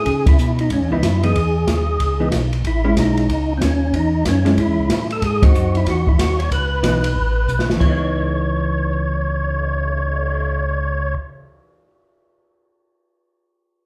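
A percussive tonewheel organ carries the melody with a fat, lightly overdriven tone, key click and third-harmonic percussion through a slow rotary speaker, while a second, rounder organ plays the bass line and a clean, picked hollow-body guitar comps darkly underneath. This brisk soul jazz organ trio piece in C# minor swings at 186 BPM with a late-night, soulful mood, moving from C#m9 through Amaj7 and G#7, punctuated by band accents at 0.2 and 5.4 seconds and a drum fill leading into a new section at 7.8 seconds. The acoustic drum kit sounds smooth, with dark cymbals and a punchy kick, and the whole group sits back in a large, reverberant studio.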